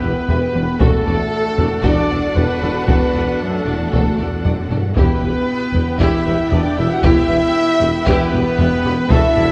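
A dark French horn section holds sustained chords beneath bright trumpet stabs from the outset, with warm, vibrato-rich violins carrying the melody and a second line while violas, a full string section, cellos, double basses and a mellow, very quiet tuba fill out the accompaniment and low end. Close, dry taiko drums struck with heavy sticks arrive at 0.3 s, driving this dramatic, relentless epic film-score cut at 116 BPM in E minor, where the harmony moves from Em to D/E and back to Em at 5.0 s. The whole mix sits in a scoring-stage reverb and carries the worn, warbly pitch drift of old cassette tape.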